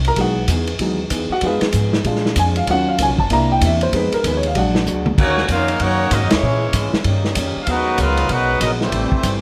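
A clear, slightly worn concert grand piano with deep bass takes a solo over the first 5.2 seconds of this sultry, brassy big band swing clip, backed by a woody, dark pizzicato upright bass, a muffled, lo-fi vintage drum kit sitting up front, and a clean, picked hollow-body electric guitar in the background. After a drum fill at 4.9 seconds, the horns take over: a soft-attacked trumpet section with vibrato and plate reverb carries the melody, a nasal, straight-muted trombone section plays a second line, and a very quiet, smooth-topped trombone section holds sustained chords. A band accent lands at 6.3 seconds, and a moderate club reverb surrounds the whole ensemble.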